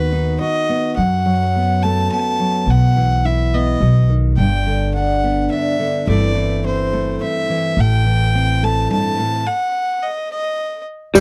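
This haunting, intimate piece of acoustic folk for a small band opens at 106 BPM in a straight 3/4, with a bowed fiddle, a fingerpicked steel-string acoustic guitar and a pizzicato upright bass all sounding together from the start. The single fiddle carries the melody with a rich, earthy tone, light vibrato and a smooth top. The guitar gives a warm accompaniment, while the bass sits prominently underneath with a woody, dark sound. The harmony moves through chords such as B/D#, F#madd11, G and Am before a stop arrives at 9.5 seconds. In the closing instant, an electric guitar through a small old amp flickers in at 11.1 seconds with slightly broken-up, lo-fi, compressed tremolo, and a jingly, bright tambourine hit lands at 11.2 seconds. The dry, close, 1970s-style studio sound keeps the fiddle, both guitars and the bass up front in this excerpt cut from a longer piece.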